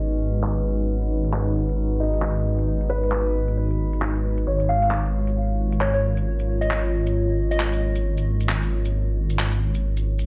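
Swung sixteenths at 134 BPM in 4/4 give this future garage excerpt a loping, wistful shuffle, with electronic shaker and handclaps entering at 0.3 s, layered and overdriven, their small-room character dulled by low-pass filtering and a filter sweep running across the whole passage. Underneath, a dark detuned saw bass holds G#1 up front, deep and rumbling with a beating, sustained tone. A deep, moody ambient pad sustains chords from G#m7 to A#m/G#, its slow-attack unison saws thickened by chorus and its own reverb, while a felt-muted upright piano adds soft, intimate accompaniment between C#4 and C#5, trailing dub echo. From 4.7 s to 7.8 s a gentle, keys-like FM lead sings a short melody between C#5 and E#5, its vintage warble shaped by chorus, tremolo and dub echo. A moderate digital room reverb with a low-pass filter wraps the mix in a melancholic haze, tuned slightly low to A4 = 438 Hz.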